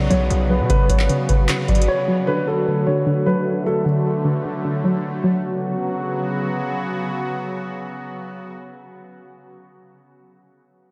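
A menacing, dark trap excerpt in B minor at 152 BPM with a half-time feel opens on a mellow, intimate concert grand piano melody with audible action noise and delay, a warbling, lo-fi pluck with chorus, a bright, airy pad of detuned sawtooth chords, and a heavy, saturated 808-style bass that drops out at 0.7 seconds. A booming analog drum machine with a deep kick, metallic hats and handclaps sits up front before falling silent at 1.9 seconds, leaving the piano, pluck and pad to drift as the chords move from Bsus2 to D; the piano ends at 3.8 seconds, and the pluck at 5.4 seconds as the harmony returns to Bsus2. The mix is soaked in a cathedral reverb that gives it a dreamy haze until the pad ends at 8.6 seconds.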